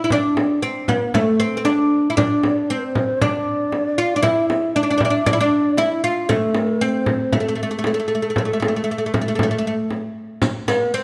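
A steady 4/4 pulse at 116 BPM, kept straight by a small, bright frame drum that sits up front from the opening moments, anchors this short cut from a longer Arabic maqam ensemble piece in A maqam bayati. The plectrum-plucked oud carries the melody between A3 and F4, its fretless, double-strung tone woody and bright and placed close to the listener, giving the music a longing, soulful character. At 2.2 seconds a low ney joins as a second line, ranging from A4 to F5, its reed-cane sound breathy and mellow with rolled-off highs, tongued notes and an expressive vibrato. Near the end, at 10.4 seconds, a riq adds dark, vintage-sounding jingles with a band-limited edge. A moderate recital-hall reverb surrounds the ensemble, lending the performance a sense of space.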